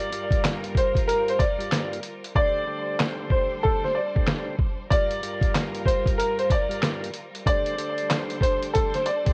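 Boom-bap hip-hop with a dark, moody cast, this short cut from a longer piece rides a swung sixteenth-note feel in 4/4. Up front, a clear, woody upright piano carries the melody in a slightly detuned, worn voice, coloured by filtering, cassette tape and tape echo. Beneath it a smooth tonewheel organ with key click and a slow rotary speaker fills in the accompaniment, while a bright, intense bowed string section holds sustained chords with vibrato from the background. The lo-fi sampler-style drum kit sits up front, compressed, pitched down and muffled, with a thumpy kick, a medium-tuned snare, handclaps and hi-hat, the hi-hats dropping out between 2.4 and 4.9 seconds. The harmony moves between Gm7 and D7sus4 under light reverb, with the home-cassette recording giving the whole piece its tape grain.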